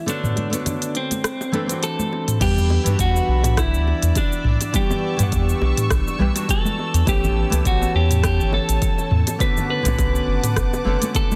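A clean, compressed electric guitar melody with delay and shimmer reverb opens this relaxed, smooth sunset chillout piece at 103 BPM in E dorian, over full-bodied fingerpicked nylon-string guitar, a tape-toned smooth R&B drum kit with shaker, rim click and toms, and soft-handed congas and bongos ringing in the background, before a round, dark analog bass, an overdriven layered electronic kick and a reedy, gut-string studio string section with light vibrato all enter at 2.4 seconds as the swung groove settles onto Em7 in a dense, heavily limited mix.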